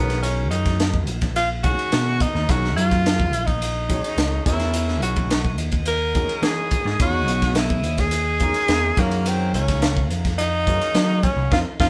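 A forceful tenor saxophone leads this slick, bright electric jazz fusion excerpt, its clear, punchy solo line full of vibrato and scooped notes, sitting up front between Bb3 and Bb4. Underneath, a vintage slap bass with a warm, amped, punchy tone anchors the 106 BPM straight 4/4 groove, alongside a crisp acoustic drum kit with a high-tuned snare, punchy kick, hi-hat and ride, heard in a small, pumping room. A polished concert grand piano fills in the harmony with deep bass, long sustain and audible action noise, giving it an intimate presence. At 4.7 seconds a very quiet studio string section enters with pure, floating bowed chords of soft attack, high in the register. The harmony moves from Cbmaj9 to Emaj9 to Gbmaj9, the band plays together live in a moderate stone room, and a full band accent lands at 11.5 seconds as the clip ends.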